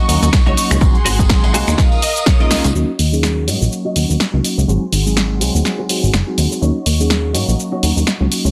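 Filtered disco house with a groovy, sensual swing, this brief cut from a longer piece rides a plucky, wave-folded analog bass and an up-front, tape-warm drum machine of snare, hi-hat, cabasa and finger snaps, joined by a punchy electronic kick from 0.3 to 2.4 seconds and a background tambourine, while a phased, gritty tine electric piano, a clean semi-hollow guitar riff with ensemble chorus and a lush bowed violin section all pump under sidechain. A clean guitar fill runs from 1.3 to 2.7 seconds, with a drum fill and a band accent landing together at 2.5 seconds, and a filter sweep runs from 2.7 seconds to the end over a dense, heavily limited master.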